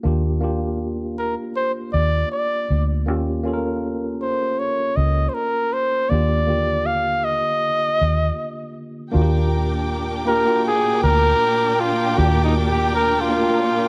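Light reverb and a small-room ambience frame this smooth, lush soul excerpt in a gently swung 4/4. A worn, slightly out-of-tune tine electric piano plays through its built-in speakers beneath a dark, foam-muted fingered electric bass that sits round and punchy up front. A close-miked flugelhorn carries the melody with vibrato from 1.2 seconds, and after a brief break it takes a solo at 9.1 seconds as a studio string section enters, bowing sustained chords and an expressive second line with portamento and a smooth top.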